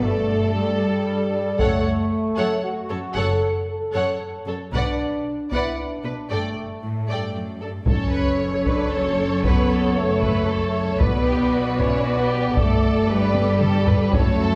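Set back in a wet recital-hall reverb, this dark, relentless orchestral film cue in 3/4 at 115 BPM centres on F# phrygian, with a smooth, vibrato-rich violin melody over a lush, distant second violin line, expressive violas with portamento, up-front horn chords, a close cello and background double bass carrying the low end, and a hard-stick taiko ensemble entering at 1.6 s and driving to a drum fill at 13.3 s over chords cycling through Gsus2, F#m and Bm.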